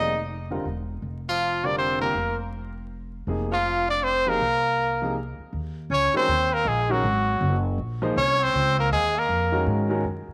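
A swinging jazz waltz at 160 BPM in 3/4, this searching, intense excerpt from a longer piece moves from F dorian over an Fsus4 to Eb dorian and an Ebm11 at 5.5 s. A brilliant, punchy trumpet carries the melody up front with light vibrato and scooped notes, while a distant, roomy tenor saxophone with soft attack and slapback echo traces a second line beneath it. A clear grand piano with audible action noise accompanies, and a woody pizzicato upright bass sits up front, all within a small room ambience, echo chamber reverb and vinyl crackle.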